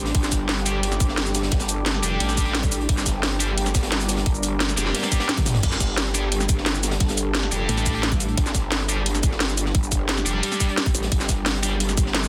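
In a dense, heavily limited mix with light digital ambience, this dark, mechanical excerpt of technical drum and bass drives a tight, up-front electronic kick and a layered kit of cracking snare, metallic hats, shaker, crash and toms, with a fill at 5.4 seconds, over a very quiet, gritty breakbeat kit, a growling, detuned growl bass pumping under sidechain, a deep, moody ambient pad sunk in the background, a faint lo-fi tape-like pad with phaser, and bright, double-tracked high-gain guitar stabs treated with distortion and delay, while a distorted, FM-edged metallic wobble bass bursts in briefly from 7.7 to 8.4 seconds.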